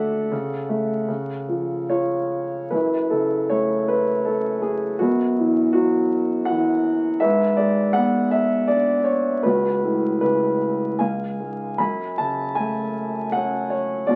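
Through the crackle of a very old 78 rpm record, a dark, boxy grand piano sits up front and plays this brief, melancholic classical fragment alone in F# minor, in a rubato 3/4 around 72-82 BPM, its intimate tone carrying audible action noise and long sustain in moderate studio reverb as the chords move from F#m/C# through Bsus4/F# and G#dim to settle on F#madd9 at 11.8 seconds.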